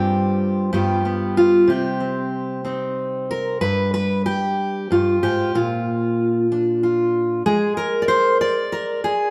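Folk in a straight 6/8, this brief, reflective and haunting passage features a solo fingerpicked steel-string dreadnought acoustic guitar, full-bodied and up front, moving from G7sus4 and G7 to C minor before shifting at 3.6 seconds to G7b9 and B-flat and then dropping its harmony at 7.5 seconds, all set in the lingering wash of a stone room's reverb.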